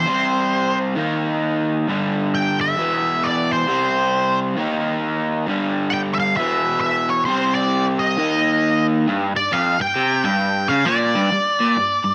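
From the first moment of this raunchy, driving rock excerpt, a crunchy, double-tracked overdriven guitar riff and a dark, picked octave-fuzz lead guitar with wah, distortion and slapback echo play up front together at 133 BPM in a swung 4/4, cycling through C5, Eb5, G5 and E5 chords in light digital ambience until a new section arrives at 9.1 seconds and carries on to 12.1 seconds.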